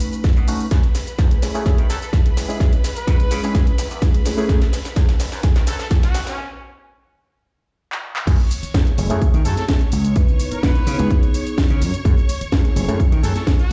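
A punchy, overdriven electronic kick sits up front through this sensual, groovy filtered disco house excerpt at 127 BPM in F# dorian, cut from a longer piece. Around it, a layered house kit with a cracking snare, handclaps, hi-hat, shaker and crash carries its own overdrive, while a gritty, bright slap bass adds tube saturation and sidechain pumping. A barky, reedy electric piano with phaser supplies the accompaniment, and a lush bowed violin section holds sustained chords with vibrato, both pumping and filtered. A bright, pop-style trumpet section carries the melody with digital delay, entering at 1.9 seconds and returning at 9.5 seconds after a break. The opening builds under a filter sweep and drum fills over F#m7 and C#m7 chords, then drops at 8.3 seconds, all set in a large studio reverb as if played on a big sound system in a bare room.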